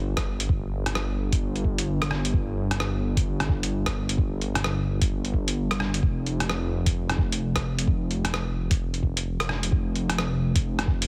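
A detuned sawtooth bass sits up front in this 130 BPM future garage excerpt, a menacing unison voice with a sine component, a fast attack and a sustained filter swell that keeps it evolving as it holds low between F1 and G1, pumping under sidechain compression from 0.0 seconds. The mood is melancholic and ghostly, in 4/4 with a 61% swing on the sixteenths and tuning set slightly low at A4 = 437 Hz. From 0.2 seconds a sampler-style electronic kick adds a muffled, thumpy pulse, pitched down, compressed and tape-warm, as if re-recorded in a small room. Alongside it, a lo-fi sampler-style kit sits up front with hi-hat and rim click, also pitched down and squashed. The mix is dry and heavily compressed, with a radio-like sound, and the same section plays twice, repeating at 6.0 seconds before the cut from the longer piece ends.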